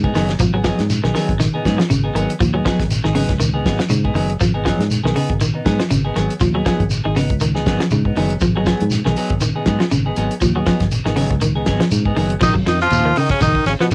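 A defiant, driving afrobeat groove at 120 BPM opens with a twangy, slightly broken-up electric guitar picking chorused arpeggios over a G#m7 chord, while a clean semi-hollow guitar adds picked stabs, a round, foam-muted fingered bass carries tube saturation, a dry 70s kit with a fat snare and tight kick pushes a lightly swung sixteenth feel, and a grainy, distant shekere joins at 0.1 seconds. The semi-hollow guitar drops out at 12.3 seconds, and at 12.4 seconds the harmony shifts to G#7(no3) as an edgy, up-front tenor saxophone with vibrato punches in with the melody, backed by a brilliant, forceful bass trombone on a second line. The lightly reverberant sound carries the lossy compression artefacts of a home cassette recording, and the clip is cut from a longer piece.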